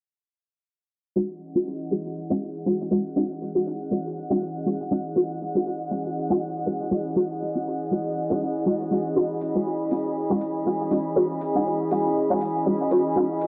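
Soulful and sunny, this deep house excerpt moves at 120 BPM in 4/4 with a 57% swing on the sixteenths, resting in E major on a single Emaj13 chord and tuned to A4 = 436 Hz. A muted, deep, full-bodied dub chord stab sits up front from 1.2 seconds, its detuned sawtooth tone plucked by a filter with a fast attack and short decay, colored by phaser, ensemble chorus and analog delay while a filter sweep runs across it. Beneath it, an airy, breathy pad of detuned triangle and sawtooth with a noise layer holds sustained chords with a slow attack, long release and chorus. A warbling, nostalgic, lo-fi pad of square and triangle waves enters at 1.5 seconds as a dark, up-front texture with chorus and built-in reverb. An electronic hi-hat, layered and tape-warm, re-recorded in a small room, appears only at 9.4 seconds in the background. The whole has a dry, gritty hardware character with cassette tape grain, a low-pass filter, light reverb and digital ambience.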